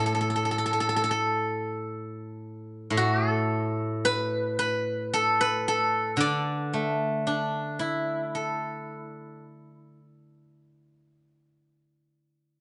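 The recording has a moderate studio reverb and a top end that stops around 10.9 kHz, captured live in a single room. This is a short cut from a longer piece of Chinese traditional music for solo plucked strings, flowing and serene in mood. A steel-string zither plays alone and up front, its acoustic tone bright and silvery, with fingerpicked notes that ring across a range from A2 to D5. The pulse sits loosely around 50 to 57 BPM in 4/4, but the playing moves freely in rubato. The zither sounds until 11.7 s, within a single unhurried section that lasts to 12.6 s.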